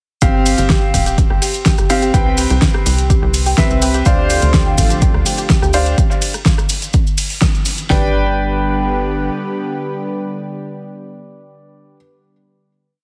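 An overdriven deep house drum kit, its punchy four-on-the-floor kick and fat snare up front with metallic programmed hats, ride and rim clicks, drives this euphoric, expansive progressive house piece at 125 BPM in G mixolydian, beneath a tight, dark sequencer bass in a dotted rhythm, a soft round pluck cycling a 3-step loop that drifts against the bar, brilliant, worn grand piano stabs with syncopated pushes, and grainy acoustic cabasa sixteenths in the background, while a lush, warbling unison pad enters at 4.1 seconds and holds the final G chord with the piano from 7.9 seconds to 12.0 seconds.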